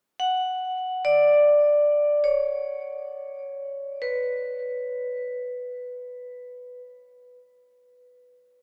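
In free time, with a floating, unmetered pulse, this short excerpt of world meditative music sets a spacious, contemplative mood in B minor, tuned slightly high to A4 = 441 Hz. A lone vibraphone struck with hard mallets carries everything, sounding from 0.2 to 6.8 seconds within a narrow span between B4 and F#5. Its tone is bright, metallic and ringing, played with the motor off so each note stays steady, and it sits up front in the mix. Around it hangs a deep cathedral reverb with a long 5.3-second tail, soaking the sound in a dreamy wash that lingers after the last note. The overall sound has a compact, small-speaker quality, giving this fragment of a longer piece an intimate feel despite the vast space.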